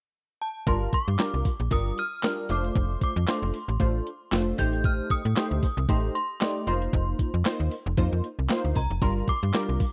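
Late-night and funky, this early-eighties boogie funk excerpt opens with a ringing, inharmonic FM synth chime carrying the melody through ensemble chorus at 0.4 seconds, joined at 0.7 seconds by a punchy, detuned sawtooth polysynth comp with a moving notch filter sweep, a snappy slap-like FM bass with a metallic attack, and a tape-warm 12-bit drum machine of thumpy kick, snare, hi-hat and handclaps, all cycling through Gm7, Dm7/F, Am7b5 and F7sus4 in a dry, close studio sound.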